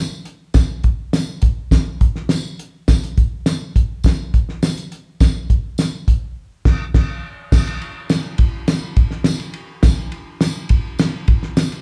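Warm and danceable, this short soul fragment moves in a steady, straight four-beat feel carried by a drum kit and a tambourine. The kit sits up front and sounds acoustic, dry and cloth-damped, with a thuddy, rolled-off top, a fat snare, a tight kick and dark crash, ride and hi-hat cymbals. Behind it, a jingly tambourine sounds distant, as if heard from across a large room. The band plays together in one space, and a moderate studio reverb gives the whole an open, roomy glow. A band accent lands at 6.4 seconds, just before the music moves into a new section at 7.5 seconds that runs to the end of the cut at 11.8 seconds.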